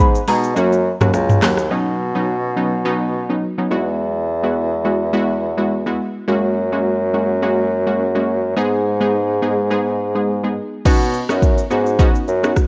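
Afrobeats at 105 BPM in B major, this short cut from a longer piece has a joyful, romantic glow, with a gentle 16th-note swing and a worn, warbling cassette-tape sheen that drifts the pitch. A buzzing, woody marimba with medium mallets opens the melody in the background, dry and boxy with a touch of delay, but it drops out after 1.4 seconds. Beneath it, a bassoon carries the bass line throughout, sounding warm with a light vibrato and a distant, roomy classical character while still sitting up front. An analog pluck built on detuned sawtooth with a noise layer supplies bright, round accompaniment chords through a chorus effect, its fast attack decaying as a filter sweep makes the tone evolve. The electronic afro-pop drum kit, with a deep kick, metallic hats, handclaps, shaker, rim clicks, toms and crash, plays only at the opening and returns at 10.9 seconds, while the chords move from G#m and F# into Badd9, Eadd9, F#add9 and G#m before landing back on Badd9.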